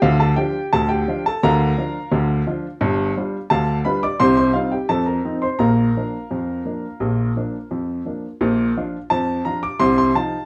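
Cheerful and lively, this short ragtime piano excerpt is cut from a longer piece and moves in a straight 2/4 feel. A woody, vintage-toned upright piano plays solo across its full span from the low G1 to the high D6, its smooth tone carrying long sustain as it sits up front, while moderate studio reverb places it further back in the room. The harmony moves from Bb/D through G7, Cm and F7 to settle on Bb at 5.6 seconds, and the phrase repeats before closing on F5/C at 9.8 seconds.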